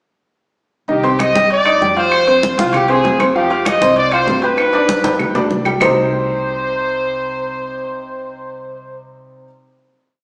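This is a short, complete salsa piece in C harmonic minor, driving and fiery at a brisk 195 BPM in straight 4/4. Most parts start at about 0.9 seconds, with the timbales joining at 1.0 seconds and the claves at 1.2 seconds. A tight trumpet section sits up front with a clear pop-style tone and light vibrato, carrying a motif-based melody of song-like phrases. A worn grand piano plays a montuno in octaves, and a dark, woody upright bass plays a pizzicato tumbao that anticipates the chords as they move from Cm through Fm and Fsus2 to G. Bright, close congas mix slaps and open strokes, while ringing metal-shell timbales and dry claves playing a two-bar time line sit further back. A drum fill arrives at 4.6 seconds, the percussion stops at 5.9 seconds, and the horns, piano and bass sustain a final Cm chord in a large, reverberant room with a small-speaker quality.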